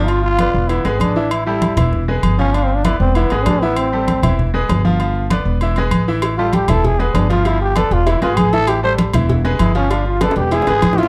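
A raspy, growling trombone solo opens this fiery, danceable salsa excerpt at 196 BPM, its gritty, scooped notes and vibrato sitting up front over a brilliant, polished baby grand piano and a woody, thumpy pizzicato upright bass, as the harmony moves between G7, E and A chords. Close, hard-handed congas with a thin-skinned snap, along with ringing metal-shell timbales and agogo bells, drive the groove from 0.1 seconds, while tight, high-tuned cowbell and softly played bongos join in the background at 6.2 seconds. A drum fill closes the passage at 10.2 seconds, all within a dark production and light reverb.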